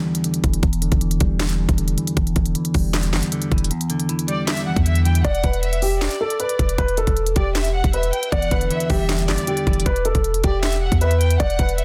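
A half-time trap groove at 156 BPM in E minor drives this menacing, dark hip hop excerpt. Its electronic kit hits with a hard-clipped kick, sharp snare, crisp hats and handclaps, while a deep, boomy 808-style bass with a fast attack sits underneath. A clean, picked electric guitar, compressed and filtered, accompanies the opening break over an Em7 chord. A bowed chamber violin section playing sul tasto with light vibrato and tape echo joins at 4.3 seconds, and at 5.2 seconds a mellow, boxy concert grand piano with audible action noise and its own tape echo takes the melody. The dense, heavily limited mix has little reverb and keeps the drums, piano and guitar up front.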